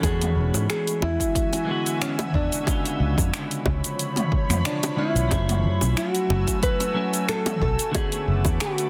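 A lightly swung 91 BPM deep house groove in 4/4 drives this wistful, smooth sunset chillout excerpt in F# minor, built from a punchy electronic kick and a dark-hatted kit of finger snaps, shaker, toms and a softly clipped snare, with tight, high-tuned bongos played with hard hands. A round, amped fretless bass sits up front while a bright, twangy clean electric guitar with digital delay and a shimmering, detuned pad with chorus and reverb fill out a progression moving from E9 through C#7b9 and F#m9 to Bm9. On top, a small fingerpicked nylon-string guitar carries the melody, finger squeaks audible through vintage 12-bit sampler grit and delay, in a dense, heavily limited mix where the bass, kick and bongos drop out at 8.6 seconds.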